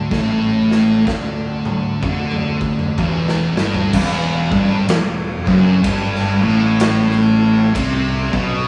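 A thick fuzz guitar riff sits up front from the opening, joined by a darker fuzz guitar and an overdriven fingered bass. A raw garage drum kit joins at 0.1 s with a fill, its punchy kick and gritty, saturated sound heard through a pumping room with a rolled-off top. This brooding, heavy stoner and doom metal excerpt has a swung feel and sounds like a band playing live in one wet stone room; at 3.9 s the darker guitar stops and a sludgy, double-tracked overdriven guitar enters in the background, while the front fuzz riff carries on to the end.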